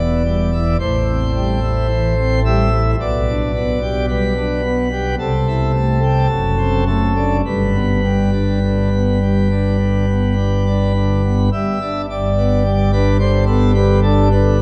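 Classical chorale-style music for solo pipe organ, reverent and serene, moving at a slow 51-55 BPM in 4/4 in G major. The organ plays a full, brilliant plenum with mixtures and a romantic voicing, sitting up front and spanning E1 to E5 as the harmony travels from E minor through A minor seventh chords and a D7 toward G major by 7.5 seconds. A long cathedral reverb with a 4.4-second decay surrounds the dark production, and this short passage is cut from a longer piece.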